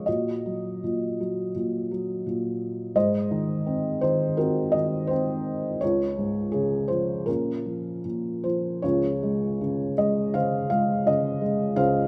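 A felt-muted upright piano sits up front in a moderate concert-hall reverb, its tone soft, mellow and intimate under the thick felt. This is a short cut from a lyrical classical solo piano piece, dark and melancholic, moving at 82 BPM in 4/4 with uneven, rubato timing, tuned slightly low to A4 = 439 Hz. Spanning Db2 to F5, the piano moves through chords including Ebm/Bb, Ab7 and Db in Bb minor before shifting to a Dbmaj9 in Db major at 8.8 seconds, where a new passage runs to the end at 12.1 seconds.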